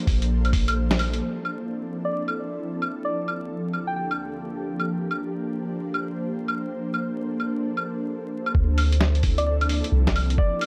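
A ghostly, airy pad breathes sustained, sidechain-pumped chords through ensemble chorus and reverb across this nocturnal future garage excerpt, over a muffled, pitched-down lo-fi drum kit of claves, hi-hat and snare, while a deep, round 808-style bass and a thumpy kick drop out within the opening 1.2 seconds and return at 8.5 seconds, and a gentle, keys-like FM lead adds brief phrases with phaser and dub echo amid dark vinyl crackle.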